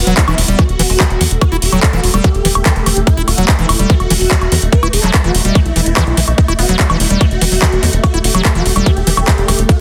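A straight 4/4 pulse at 145 BPM drives this hypnotic, psychedelic trance excerpt in E harmonic minor, built on an up-front electronic kick, a layered garage kit of handclaps, metallic hi-hats and woodblock, a tight, punchy sequencer bass and a squelchy, resonant acid bass riff carrying chorus, delay and sidechain pumping. Over them an aggressive, detuned rave lead swarms through E4 to B4 with a pitch-rise attack, phaser and delay, while a tense, evolving granular drone sustains chords in the background. A very quiet, juicy blip pluck adds a second line, first sounding until 1.3 seconds and returning at 6.6 seconds, all within a dense, heavily limited modern master.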